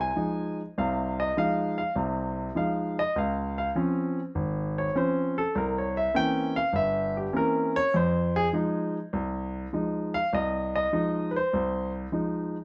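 Cool and late-night in mood, this short solo jazz passage, cut from a longer piece, moves at 100 BPM in 4/4 with a swung eighth-note feel in F minor, tuned slightly below standard pitch. A baby grand piano plays alone throughout, its polished, present tone sitting up front and spanning from deep bass to the upper middle of the keyboard. The harmony moves from Fm7 through Dbmaj7 and C7b9 before returning to Fm7 at 7.9 seconds, all framed by a moderate studio reverb.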